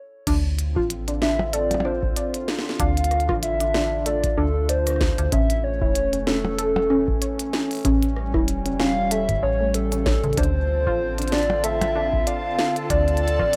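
Eerie, glitchy IDM in D minor at 95 BPM with a light 16th-note swing, where a warbling, nostalgic lead with vibrato floats over a dusty, detuned pluck arpeggio, a vintage tape-like pad of sustained chords, a metallic FM bass, a deep analog kick and a glitchy kit of tiny snare, clicky hats, rim clicks, shaker and percussion blips, moving from Dm7 to A and back, until a bright, bubbling stepped-filter texture with sidechain pumping appears in the background at 10.6 seconds, all in a rough home-demo mix with a small-room sound.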